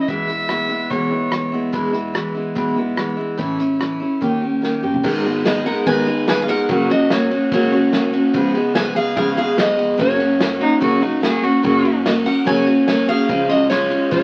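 A nasal, earthy fiddle with light vibrato opens this heartfelt, down-home honky-tonk excerpt over a bright, full-bodied picked acoustic guitar, while a growly, woody upright bass sits in the background and an unplugged kit, played with bundle sticks and a punchy kick, drives the straight 145 BPM groove. After a drum fill, a second picked acoustic guitar with fresh strings takes the melody up front from 5.5 seconds as the harmony shifts toward G#m, and the fiddle returns briefly around 10.6 seconds. A wet club reverb and the crackle of a very old 78 rpm record give it a vintage feel.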